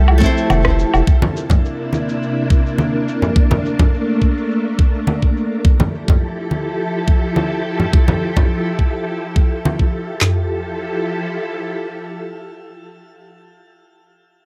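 Sunset chillout in F major at 105 BPM in a straight 4/4, this short excerpt from a longer piece feels sunny and blissful. A silky, warbling string machine holds slow-blooming chords up front through the whole 13.3 seconds, its ensemble chorus and shimmer reverb drifting over a progression that moves from Fmaj9 through C9 and Bbmaj7 before returning to Fmaj9. A fingerpicked nylon-string guitar, small and intimate with audible finger squeak, and a round, deep analog bass with a mellow, wave-folded tone both sound only in the opening second, the guitar trailing digital delay and shimmer reverb. A produced R&B kit with a knocking kick, woody snare, handclaps and toms sits tape-warm and forward, joined by electronic woodblock, shaker and filtered rim click in a small room. Close, dry congas struck with hard hands ring out up front until about 9.8 seconds, and the drums drop out near 10.4 seconds as a brief second section leaves the strings glowing on their own.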